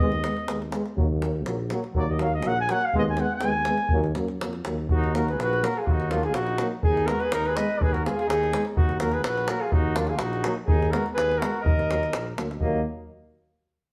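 Virtuosic and fiery, this excerpt of Balkan brass band folk moves at 124 BPM in a straight 2/4, set in E-flat harmonic minor. A tight, close and dry davul drives it from the front, while a mellow tuba holds the bass and a trombone with a smooth top fills in the accompaniment alongside a dark, soft-attacked French horn set in the background. For the first 4.9 seconds the trumpet takes a solo, its classical-style tone carrying a light vibrato and sounding distant and roomy. At 4.9 seconds a warm flugelhorn enters up front with the melody, and the trumpet carries on as a second line. The harmony sways between Abm over Eb and Ebm, and the band plays live in one room with a wet large-studio reverb.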